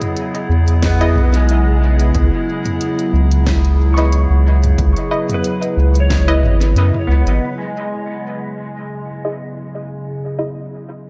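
A warbling, lo-fi pad opens this hazy, deep ambient dub excerpt in C# minor at 91 BPM, holding sustained chords through chorus and phaser alongside a clean, twangy pedal steel guitar playing arpeggios through analog delay and an organic electronic drum kit with a woody snare, smooth hats and dub echo. A round, dark analog bass sits up front from 0.5 s, joined shortly after by a punchy, overdriven electronic kick tucked in the background. Muted, detuned sawtooth chord stabs with a short decay arrive through lush chorus and dub echo, over a gentle 16th-note swing and harmony moving from E to C#m7. The kick falls out at 6.2 s, and at 7.4 s the drum kit and bass drop away while a filter sweep colors the pedal steel through its final phrases, leaving the nostalgic pad and the stabs to carry the closing seconds. Light reverb gives the whole mix a soft sense of space.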